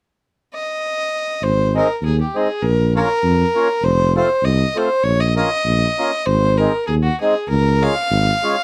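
A lightly swung 2/4 pulse at 99 BPM drives this bouncy, jolly alpine folk piece in Ab major, cut from a longer performance. A single bowed fiddle opens the melody at 0.5 seconds, its clear, earthy tone shaded with light vibrato and a slapback echo. The mellow tuba arrives as the bass at 1.4 seconds, when the harmony settles onto Ab, playing in a classical style with its own vibrato. The accordion follows at 1.7 seconds with reedy, full accompaniment, its tone-chamber sound rich and airy. The chords move through Bbm, F, Bbm and Ab before landing on Db, with all three parts up front in a dry, close 1970s-style studio sound with light reverb.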